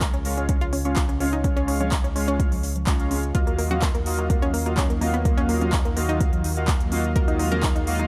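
An overdriven electronic kick drum leads this driving, dreamy progressive house excerpt at 126 BPM in Eb minor, its deep, layered punch sitting forward in a dry, close mix. Around it, a big-room dance kit supplies handclaps and crisp, pumping hi-hats, while dry analog congas tick along in the background. A round, dark bass built from sawtooth and sine tones with a ring-modulated edge pumps under the groove, and a bright, detuned analog pluck spins arpeggios through chorus and digital delay. A soft, smooth supersaw enters at 0.3 seconds with stabs that carry a cassette-tape tint and a sweeping low-pass filter, echoed by delay. At 3.3 seconds a warm, detuned pad slips in behind everything with slow-attack sustained chords and a moving notch, as the harmony shifts from Db to Ebmadd9.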